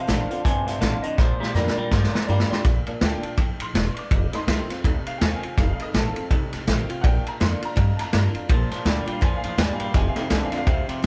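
Rockabilly with an upbeat, rollicking swing, cut from a longer piece, opens with a slightly broken-up, lo-fi electric guitar carrying the melody and a clean, twangy electric guitar riff with spring reverb, until a drum fill leads at 2.6 seconds into a honky-tonk solo on a detuned, jangly upright piano with short sustain. Underneath, a picked steel-string acoustic guitar sits full-bodied in the background, a woody, thumpy upright bass on gut strings holds the low end, and a punchy vintage drum kit with dark cymbals plays up front, while the riff guitar returns at 8.5 seconds. The band sounds like it is playing live in one room with moderate studio reverb.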